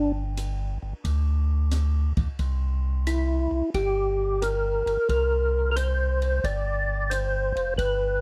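A dry, close 1970s-style small-room recording opens this bluesy, swinging soul jazz organ trio fragment, where a fat, percussive tonewheel organ sits up front with key click, chorus vibrato, a slow rotary speaker and slapback echo to carry the melody, a piping, scooped tonewheel organ bass line runs underneath from the start, and an acoustic open jazz drum kit with dark cymbals, a high-tuned snare and a boomy kick joins at 0.4 seconds.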